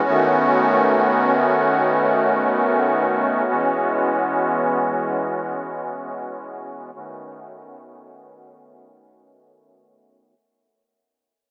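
Hip hop in free time, this short passage cut from a longer piece has a floating, blissful mood built around a single musette accordion playing solo from 0.0 to 10.3 seconds. The accordion sits up front with a reedy, shimmering character, its musette tuning and band-limited, vintage tone shaped by a low-pass filter and a dub echo. A filter sweep moves across the accordion for the whole passage, while a moderate plate reverb with a 2.8-second decay and an echo-heavy mix give the sound a drifting, suspended quality. The harmony moves from B9 to E69 at 3.5 seconds and returns to B9 at 6.9 seconds, while the accordion stays within a range from D#3 to F#4. A fade-out runs through the entire passage, so the music seems to hover and recede at once.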